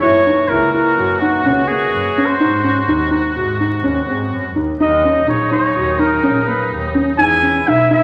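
In a straight 5/4 at 126 BPM, this playful, shimmering chamber piece in F# mixolydian is an excerpt cut from a longer work, moving through F#7, G#7, D#m7 and Emaj7. A clear, up-front flugelhorn carries the melody with vibrato and scooped notes in a vintage pop style, over sustained chords from a close-miked woodwind section, mellow arpeggios on a felt-muted upright piano with a dark, boxy tone, and a focused, distant bowed double bass that stops at 7.8 seconds. The whole sits in a recital hall with a 1.5-second reverb and a layer of vinyl crackle.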